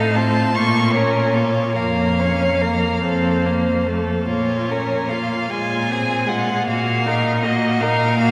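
Swaying in a rubato 6/8 at roughly 48-53 beats per minute, counted in dotted quarters, this slow romantic movement for string quartet unfolds in Bb minor with a yearning, elegiac mood. The first violin carries the melody high between Db5 and Db6, its rich, vibrato-laden tone even and polished at the top. Beneath it, the second violin sings a soft-attacked, expressive second line with gliding portamento. The viola fills in the harmony with a warm, focused, somewhat distant sound, while the clear, steady cello anchors the bass from F2 to Bb2. All four play bowed together across the full 8.3 seconds of this fragment of a longer piece, and they sit in a wet church reverb with a long, lingering 4.1-second decay.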